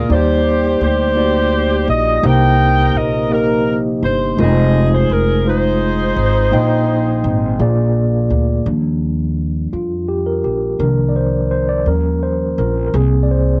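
A saxophone section leads this hopeful, reverent slow gospel fragment in Eb major, its ensemble tone carrying a jazz-style vibrato, over a mellow tine electric piano and a plucked upright bass. The pace is an unhurried 56 beats per minute in a straight 6/8, with the harmony moving from Ebmaj7 through Cm7 and Fm7 to a Bb7 turnaround. The pizzicato bass sits up front with a woody, thumpy, dark gut-string sound low in the register, while the piano's clean comping comes through its built-in speakers. Both the saxophones and the electric piano carry a cassette tape coloring, and light reverb frames this home recording on cassette. The horns finish their melody at 7.9 seconds, and from 8.7 seconds the electric piano takes a solo over richer Ebmaj9, Cm11 and Abmaj9/C chords, continuing with the bass until the cut at 13.6 seconds.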